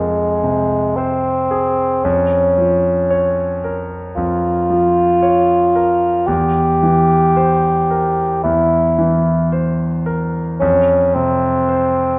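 A wet stone room, with a reverb time of 1.3 seconds, surrounds this brief section of a longer romantic classical piece for bassoon and grand piano. Set in F minor at a slow 56 BPM in 4/4, the music moves with a rubato feel and a yearning, solemn mood. Up front, the mellow bassoon carries the melody as a solo voice in classical style, singing between Ab3 and G4. The bright concert grand piano, also up front, accompanies from E2 to Db5 with a brilliant, natural tone and deep bass. The harmony opens on F minor, moves to B-flat minor over F at 2.0 seconds and to C7 over E at 6.3 seconds, then settles on an F5 chord at 10.6 seconds.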